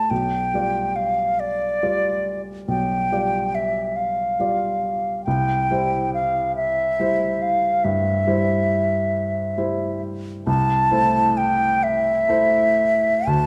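Unfolding in a lilting 12/8 metre with a free, rubato pulse, this tender and serene romantic duo for flute and grand piano feels unhurried and intimate. A bright baroque flute carries the melody, its wooden, airy tone lifted in the highs and shaded with expressive vibrato and crisp tonguing as it sings in its upper-middle register. Beneath it, a warm baby grand piano supplies the accompaniment, sounding natural and close, reaching from deep bass notes up to meet the flute's lower range. Both instruments sit up front, with the flute slightly more prominent, while a wet recital hall reverb gives the pair a gentle, lingering bloom. The harmony moves from G7/B to C at 5.3 seconds and then to Am/C at 10.5 seconds, and the passage, cut from a longer piece, ends at 13.5 seconds.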